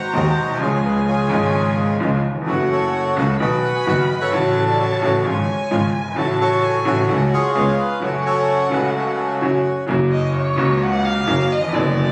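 A reedy, up-front bandoneon carries the melody of this tense, dramatic tango in a rubato 4/4, while a second, very quiet bandoneon adds smooth stabs beneath it. A dark violin sings an expressive second line with vibrato and portamento, a bright, worn and slightly detuned upright piano gives woody accompaniment, and a bowed double bass plays an intense, biting bass line; once the bandoneon melody ends at 9.8 seconds, the violin takes a solo from 9.9 seconds. The piece is captured on a phone in the room, steeped in the wet reverb of a recital hall.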